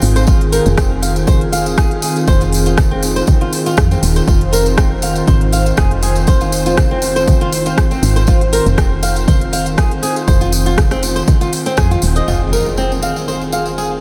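Earthy and hypnotic, this afro house excerpt at 120 BPM in F minor rides a swung Fm7 groove, with an overdriven, deep electronic kick up front, a crisp-hatted drum kit with rim clicks and toms, jingly tambourine, a round woody FM bass and a detuned sawtooth pad pumping under sidechain, and fingerpicked flamenco guitar arpeggios filtered and trailed by diffuse delay, all steeped in a dreamy, reverb-soaked space until the kick drops out at 11.9 seconds and the kit at 12.3 seconds for a background impact.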